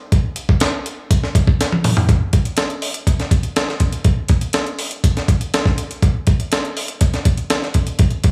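Set in a light, digital studio ambience, this slick, urban pop excerpt features a sampler-style breakbeat drum kit playing in straight 4/4 from 0.1 to 8.3 seconds. The kit sits up front and sounds compressed, gritty and pitched up, with a thumpy kick, a medium-tuned snare, hi-hat and toms. A drum fill at 1.6 seconds leads into a new section at 2.1 seconds.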